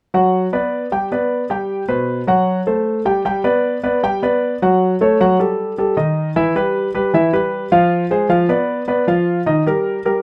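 A solo concert grand piano, intimate and up front with deep bass and audible action noise, carries this lively, danceable jazz passage in G major at 154 BPM in a straight 4/4, moving through chords such as Bm/F#, Gmaj7, F#dim and Eb, with a new section beginning at 3.3 seconds, all within a moderate club reverb in a short fragment cut from a longer piece.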